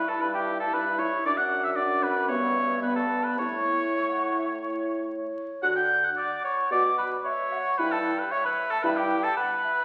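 Spirited and graceful, this brief cut from a longer classical-period movement for wind quintet moves at a quick 110 BPM in D major with a flexible, rubato feel, as a pure, hollow-toned concert flute sings the melody with vibrato and tongued articulation over a punchy, close-miked oboe line set up front, a dark clarinet sitting distant in the background, a mellow French horn that drops out at 9.0 seconds, and a vintage-sounding bassoon with light vibrato holding the bass, all wrapped in a reverberant recital-hall ambience and the crackle of a very old 78 rpm record.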